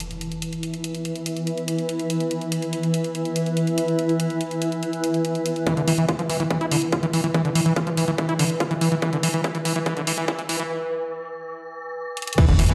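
A background electronic impact opens this hypnotic psychedelic trance excerpt at 143 BPM in 4/4. Alongside it, a swarming, detuned drone holds an E5 chord with built-in reverb and sidechain pumping while a filter sweeps across it, and a layered electronic drum kit of crash cymbal and hi-hat plays underneath. Soon a cloudy, blurred granular pad spreads between E4 and E5, its moving notch and slow attack adding a mellow haze. At 5.7 seconds a build-up begins: an overdriven, tight electronic kick sits up front while a squelchy, gritty acid bass riff, resonant and saturated, runs through its own filter sweep with dub echo and sidechain pumping. Drum fills punctuate the rise and a break arrives at 10.7 seconds, before another impact and a brief punchy, funky analog bass pluck in the background at 12.5 seconds close the cut. The whole mix sits in a lush digital hall ambience, like a big sound system playing in a bare room.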